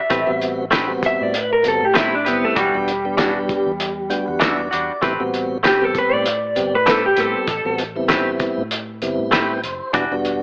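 Smoky and soulful, this short cut from a longer straight-eighth soul blues sits on a gentle swing and carries an AM radio sound with light small-room reverb. An electric guitar through a small old amp carries the melody from the start until 7.8 seconds, its slightly broken-up, compressed tone bathed in spring reverb and placed up front, while a clean electric guitar solo runs across the whole passage. A direct-recorded clean guitar adds bright, twangy stabs, and a mellow tonewheel organ with audible key click and a slow rotary speaker fills out the accompaniment, stepping forward with fills at 3.8 and 9.0 seconds. Beneath them, a foam-muted fingered bass stays round and dark, low in the mix. A cloth-damped drum kit of kick, snare and hi-hat sounds muffled and gritty, with a fat snare and tight kick. The harmony moves from Am9 to Em9 and back to Am9.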